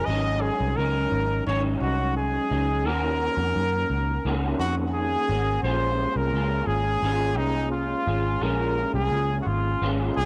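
A straight 4/4 indie pop groove at 86 BPM in Bb minor carries this wistful, mellow excerpt, where a bright, up-front trumpet sings the melody with light vibrato and scooped notes through analog chorus and tape echo, an electric guitar through a small old amp adds slightly broken-up, lo-fi accompaniment with ensemble chorus and warbly pitch drift, and a vintage muted picked electric bass enters at 0.1 seconds with a dark, round, foam-muted tone, all set in a small, lightly reverberant room with a dry, gritty hardware sound and transformer saturation as the chords move from Ab7sus4 to Ebm7 to Bbm7.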